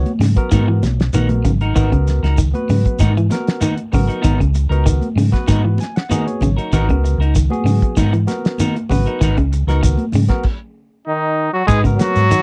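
A barky, lightly overdriven tine electric piano, a twangy guitar on the edge of break-up playing arpeggios through spring reverb, and a round, up-front hollow-body fingered bass open this hypnotic, intense afrobeat excerpt at 97 BPM in G# minor, joined almost at once by a cloth-damped, thuddy drum kit with a fat snare and dark cymbals, high-tuned congas in the background, a grainy shekere and picked stabs from a clean guitar with subtle chorus, in a dry, close 1970s-style studio recording, until a stop at 10.4 s gives way at 11.1 s to a clear, punchy trumpet melody over a brilliant trombone second line.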